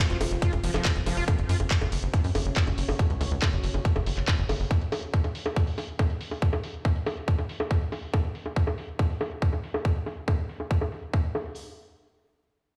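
Heard through a big sound system in a bare stone room, this alien, hypnotic psychedelic trance fragment opens with a squelchy, screaming acid line that is distorted, resonant and bright, sounding only until 1.2 seconds, over a punchy sawtooth sequencer bass and a deep, dark, wave-folded ambient pad with ring modulation sitting in the background, both stopping at 4.7 seconds, while a tight, up-front electronic kick and a filtered drum and bass kit of bongos, handclaps and metallic hi-hats carry on under a filter sweep until about 11.5 seconds.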